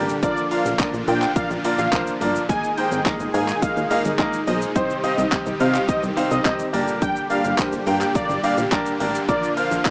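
Bittersweet yet confident, this dance-pop excerpt moves at 106 BPM in a straight 4/4 and sits in C minor, cut from a longer piece. A clear, polished baby grand piano plays accompaniment up front alongside huge, lush supersaw chords with a moving notch, both breathing with sidechain pumping and colored by cassette tape. Beneath them a plucky analog bass, punchy and funky with a wave-folded filter pluck and a mellow decay, also pumps with the sidechain, while an electronic pop drum kit enters at 0.1 s with a punchy kick, metallic hi-hats, handclaps and shaker. From 0.2 s a thick, bold unison lead carries the melody between C5 and Ab5, its nasal, vintage tone warbling with vibrato and a sub octave beneath it, also run through cassette tape. The harmony moves through Bb, Absus2, Cm and Gm before returning to Bb, all heard through a moderate booth ambience and the small-speaker character of a home cassette recording.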